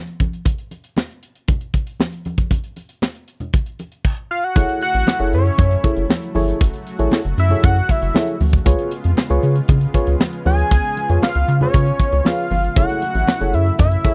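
A dry, close-miked excerpt of late-night, slick early-eighties boogie funk opens with an acoustic drum kit with a high-tuned snare and punchy kick, handclaps and crash, plus soft ringing congas in the background, before a fat detuned analog lead with vibrato enters at 4.3 seconds and a rubbery, bouncy square-wave bass, glassy bell-like FM electric piano and a lush, warbling unison pad join at 4.6 seconds over F#m7 and C#7 chords.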